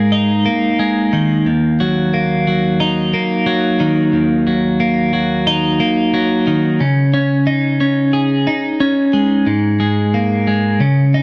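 A lone twelve-string electric guitar opens this rock excerpt, its bright, twangy, clean picked tone sitting up front with analog delay and compression. At a steady 90 BPM in Eb minor, it moves through suspended chords around Eb minor over about 11.2 seconds, ranging from Eb2 up to Ab4. A moderately large studio reverb lends the solo guitar a cathartic, cinematic sweep.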